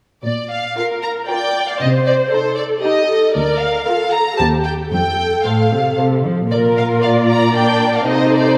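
A quick 3/4 pulse at 115 BPM drives this lively, cheerful excerpt from a classical-period orchestral movement in Bb major, where a lush violin section carries the melody with soft-attack vibrato over a dark, woody cello section on the bass line, both entering at 0.2 s. From 0.8 s a second violin section adds a smooth, portamento-tinged second line and a focused viola section fills in the accompaniment, all bowed with warm vibrato. The strings sit in a wet concert hall reverb, and the harmony moves from Bb through Adim/C, Bb/D, Cm/Eb and F before settling back on Bb.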